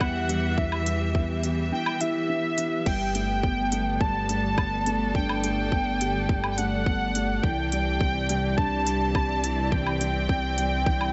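An echo-chamber reverb gives this short cut from a longer piece a roomy, softened sound with a dulled top end. It is hopeful, luminous piano-and-strings electronica in G major, moving at 105 BPM in a straight 4/4 over a progression of Em, Gadd9 and Cadd9. A velvety synth lead with chorus and vibrato sits up front, carrying the melody. Beneath it, a felt-muted upright piano plays a boxy, intimate riff with audible action noise, and a rich bowed string section holds smooth sustained chords that pump with sidechain. A dark, detuned saw bass rumbles and beats below, also pumping with sidechain. A tight electronic kick drives the groove, while a tape-warm drum kit re-recorded in a large room adds crisp hi-hats, crash cymbal and woodblock.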